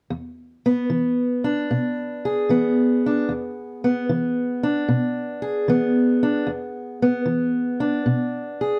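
Heard through a dark studio mix with wet reverb, this soulful, gritty swung blues fragment, cut from a longer piece, features a boxy fingerpicked steel-string parlour acoustic guitar placed up front, carrying the melody over an E7 chord from 0.1 to 8.8 seconds.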